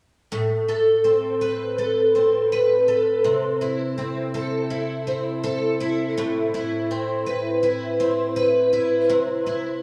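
A picked twelve-string acoustic guitar sits up front from 0.3 to 9.8 seconds, spinning shimmering, octave-doubled arpeggios through Amadd9 and C6 chords, colored by ensemble chorus and analog delay and bathed in a wet echo chamber reverb that gives this short dream pop fragment a blissful, dreamy glow.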